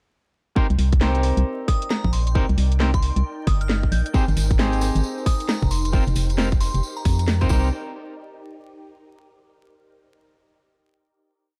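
UK garage in a skippy, bouncy two-step at 134 BPM in C minor, where a tight, up-front kick and swung hi-hats, rim clicks and a cracking snare drive a hollow, organ-like FM bass with tube saturation beneath bright, clean hollow-body guitar stabs with delay and a silky string-machine pad that pumps through phaser and ensemble chorus over Cm7, Abmaj7 and F7sus4, while a glassy synth bell adds short phrases from 1.7 seconds, jingly tambourine sixteenths join at 4.1 seconds, and the dark, dry production, dusted with vinyl crackle, closes on a final hit at 7.7 seconds.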